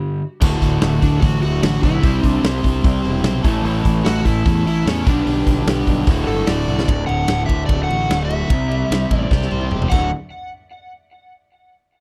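Classic rock with a sunny, driving mood, moving at 148 BPM in a straight 4/4 in D mixolydian, cut from a longer piece. A dark, overdriven semi-hollow guitar opens the riff alone in the background before a bright, compressed electric guitar, a very quiet double-tracked electric guitar, fuzz-laden fingered bass and a huge arena drum kit all come in at 0.4 seconds. The acoustic kit sits up front with a boomy kick, a medium-tuned snare, crashes, ride, hi-hat and toms ringing in a big, natural room, and it throws in drum fills at 6.7 seconds and again toward the close. From 1.0 seconds an overdriven slide guitar carries the melody with a warm, fingered tone and tape echo, riding over chords that move from D through C, A and G/B. The quiet double-tracked guitar drops out at 6.9 seconds, and the whole piece has the dry, close sound of a 1970s-style studio.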